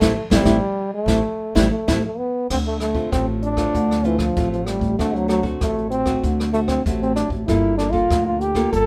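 A samba and choro fragment cut from a longer piece, with a nostalgic yet lively mood and a straight four-beat feel. A breathy trombone carries the solo melody up front, its warm, jazz-style phrasing colored by vibrato and scooped notes. Beneath it, a small-sounding nylon-string guitar is fingerpicked in accompaniment, while an upright bass plays pizzicato with a woody tone. A brushed jazz kit sits distant and roomy, with dark cymbals, a crash, hi-hat, a medium-tuned snare, rim clicks and a boomy kick. The band lands an accent over the opening Am7 through 2.5 seconds, and the harmony then moves through Dm7, D7 and Gm9 under a light reverb.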